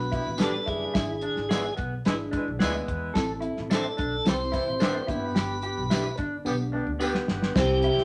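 A piping tonewheel organ carries the melody through a slow rotary speaker from the first moment, over a worn, slightly out-of-tune tine electric piano and a woody, thumpy upright bass, in this danceable, uplifting slice of uptempo 1960s-style soul at 109 BPM in G major. A dark, soft-edged horn section adds a second line, and a twangy, bright guitar through a small old amp plays a riff while a second lo-fi, slightly broken-up guitar throws in stabs from 0.4 s. A cloth-damped drum kit sits up front with a tight kick and dusky cymbals, a jingly tambourine stays in the background, and over chords moving from G through E7/G# and Am back to G, a drum fill arrives at 6.5 s in a moderate studio reverb.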